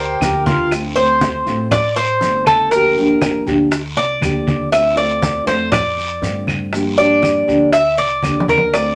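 A roomy, tube-saturated studio sound frames this sultry, danceable slice of Cuban son and guajira in D minor at 120 BPM, where a breathy, chiffy jazz flute sounds briefly before the up-front, metallic Cuban tres takes a solo from 0.7 seconds, picking arpeggios on its doubled strings over chords moving between Gm7 and Dm7. Beneath it, a woody, thumpy pizzicato upright bass and a dark, thumb-plucked nylon-string guitar hold the harmony, while bright, thin-skinned congas and a raspy guiro sit close and dry in the percussion. Round bongos, vintage-toned claves and grainy, compressed maracas fill in behind, with drum fills around 0.5 and 8.2 seconds.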